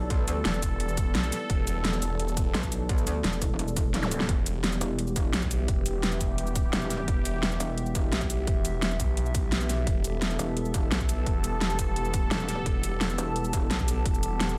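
A snarling, growling distorted saw bass sits up front in this dark, aggressive technical drum and bass excerpt, joined by a metallic FM wobble bass with tube saturation, a punchy electronic kick and a dubstep kit with a huge snare and metallic hats under studio reverb, while a sweeping resonant pad with vintage 12-bit grit and a lo-fi, nostalgic tape-like pad in the background pump against the beat, a drum fill arrives at 3.9 seconds and a brief zap sounds at 4.0 seconds.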